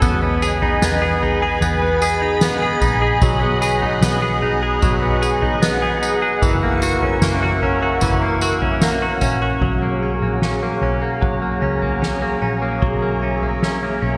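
A straight 4/4 pulse from a soft-mallet drum kit, with a boomy kick, fat snare, tambourine and toms in a big room, carries this blissful, floating dream pop fragment under a foam-muted, round and punchy picked electric bass. A bright, twangy, up-front clean guitar plays compressed arpeggios through lush chorus and digital delay, while a silky, warbling string machine holds slow-attack chords with phaser and ensemble chorus, and a very quiet reversed, granular swelling texture drifts beneath until 10.0 s. The harmony moves from Emaj7 through B6 and F#7 to F#add9, all set in a lush hall reverb with bright 1980s-style digital production.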